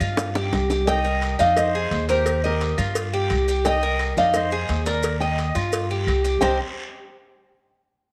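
A drum fill opens this brief, nostalgic and sultry fragment of Cuban son and guajira as a metallic, bright tres plays double-string arpeggios over a dark pizzicato upright bass, with distant woody claves, a raspy guiro and grainy maracas in the background and tight, high-tuned cowbell and bongos arriving at 0.2 seconds, until at 0.9 seconds a fingerpicked nylon-string guitar takes the melody while a breathy concert flute with vibrato and lifted highs adds a second line, the whole set in a moderate echo-chamber reverb.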